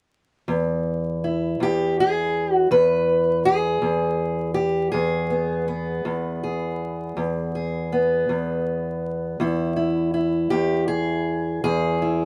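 Vinyl crackle sits under a close, detailed recording in a small room with a moderate reverb of about 0.6 seconds, giving the sound an intimate, lived-in feel. This is acoustic country blues in E major, rollicking yet laid-back, moving at 54 BPM in dotted quarters over a straight 12/8 metre. A lone fingerpicked steel-string acoustic guitar plays throughout, from 0.5 to 12.2 seconds. Its boxy, parlour-style tone sits up front, ranging from E2 to B4. Tuned slightly high, to A4 = 443 Hz, it rests on the E chord for the whole of this short passage, which is cut from a longer piece.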